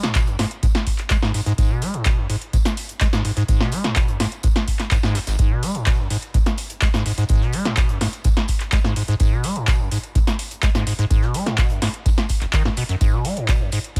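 A straight 4/4 pulse at 126 BPM drives this gritty acid house excerpt in G# minor: a deep, up-front electronic kick enters at 0.2 s, an analog drum machine adds a punchy snare, handclaps and metallic hats in a short room, and a dry acoustic 70s kit with a fat snare, hi-hat and tambourine sits in the background beneath a squelchy, resonant square-wave acid bass riff with a filter sweep, tube saturation, subtle chorus and digital delay, in a close mix with little reverb.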